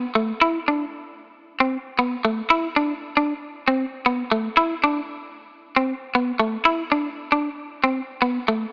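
A lone clean electric guitar opens the recording at 0.0 s and carries it on its own until 8.6 s, playing in a sunny, danceable highlife style. Its tone is bright and twangy, with a picked attack and a compressed, up-front presence that keeps every note forward in the mix. The part stays within a compact register from A3 to E4, moving in 4/4 with a light swing on the sixteenth notes that gives it an easy, lilting bounce. A moderate plate reverb with a 2.7-second tail adds a glowing sense of space, while the overall sound carries the narrow, boxy colour of an AM radio broadcast. This short passage is cut from a longer piece.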